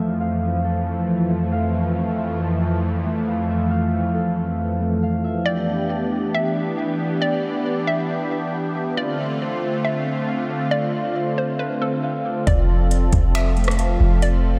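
Atmospheric cloud-rap in a half-time hip hop feel, ethereal and spacious, this excerpt opens on a smooth, detuned sawtooth pad holding sustained chords while a ringing, thumb-plucked Celtic harp spins arpeggios through tape echo, all drenched in huge ambient reverb. At 5.5 seconds a hollow, warbling square-wave pluck adds a bouncy, vintage melody with chorus and echo over chords moving from Em7 to Dm7. At 12.5 seconds a deep, boomy 808-style bass arrives up front alongside a smooth electronic R&B kit of finger snaps, metallic hi-hat, soft kick and rim click that sounds re-recorded in a large room.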